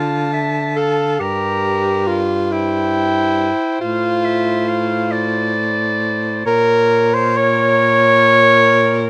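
The recording sounds close and detailed, with a light reverb around a short, serene and tender passage cut from a longer classical piece for a quartet of single reeds. It moves in a slow, rubato 6/8. A bright, vintage-toned clarinet with a soft attack carries the lyrical melody. A clear alto saxophone with vibrato sits distant and roomy in the background as the second line. The tenor saxophone stands up front as the most prominent voice, playing a warm, smooth-topped accompaniment, while a close-miked baritone saxophone with vibrato supplies the bass. The harmony drifts through minor and major chords before turning to B-flat minor at 6.5 seconds, and the clarinet drops out at 8.9 seconds just before the others close at 9.1 seconds.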